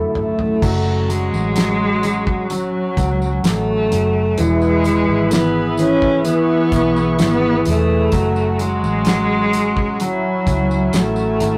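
An expressive bowed cello carries the melody with vibrato and portamento in this heartfelt, emotional pop ballad excerpt, backed by an intimate concert grand piano with audible action noise, a smooth, warbling vintage analog pad with chorus, and a dry 70s drum kit with a fat snare and tight kick that opens with a fill before a dark, round foam-muted electric bass and a jingly tambourine in the background join at 0.6 s, all captured as a rough rehearsal-room recording with warm saturation and moderate studio reverb.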